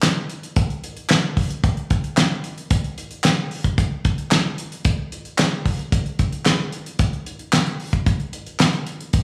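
A damped, 70s-style drum kit leads this funk excerpt, its fat snare and tight kick sitting up front in an acoustic, mid-forward sound that stays dry despite the room around it. The groove runs at 112 BPM in a straight 4/4, with hi-hat and the kit's own handclaps filling out the pattern for the full 9.2 seconds. Behind it, a group handclap adds a crisp, human layer, set in the background with a small-room character, and it drops out at 8.7 seconds. The whole band sounds as if it is playing live in one room, placed in a large studio reverb with a 1.1-second tail. The mood is danceable and late-night, a short slice cut from a longer piece.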